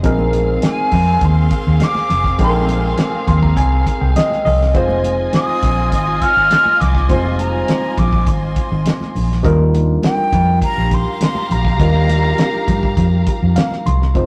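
This rough rehearsal-room recording carries tube saturation and a moderate stone room reverb, giving a bittersweet, cinematic slice of lush 1970s-style soul a lived-in glow. A cloth-damped drum kit thuds underneath with a fat snare and tight kick, while a foam-muted fingered electric bass sits up front, round and dark. Very quiet congas add a close, soft-handed, high-tuned presence. A barky, reedy electric piano, lightly overdriven and colored by phaser, carries the accompaniment through Bb13sus4, Fm7 and Ebmaj9, stepping forward with fills at 3.0 and 13.3 seconds. A muted studio string section plays a veiled con sordino second line with vibrato. On top, a breathy jazz flute enters at 0.6 seconds with a hollow, distant straight tone trailed by analog delay.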